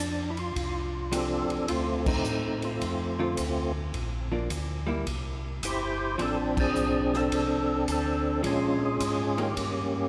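A percussive tonewheel organ carries the melody up front, its fat, lightly overdriven tone shaded by chorus vibrato, key click and a slow rotary speaker, while a second, mellow and round organ voice supplies the bass line in this swinging, greasy soul jazz organ trio piece at 107 BPM in F major. A swinging big-band drum kit with dark cymbals and a punchy kick enters at 0.4 seconds, and a dark, clean hollow-body jazz guitar comps in the background from 1.1 seconds, with the band hitting accents at 2.0 and 6.5 seconds. The whole group sits in a church-like space with a long, wet cathedral reverb, and this short excerpt moves through a chord sequence including Dm7, Gm7 and Bbm7.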